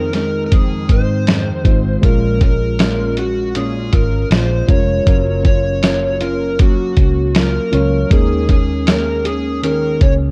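A muffled, thumpy lo-fi sampler-style drum kit sits up front in this mellow, wistful bedroom-pop excerpt in Bb minor at 79 BPM, where an overdriven slide guitar with analog chorus carries the melody over a dark, fingerpicked nylon-string guitar with chorus and vibrato, a reedy electric piano with cassette-tape colour in the background, and a round, foam-muted vintage electric bass, moving through Fm7, Bbm7, Gbmaj7 and Eb7sus4 in a dark, lightly reverberant production.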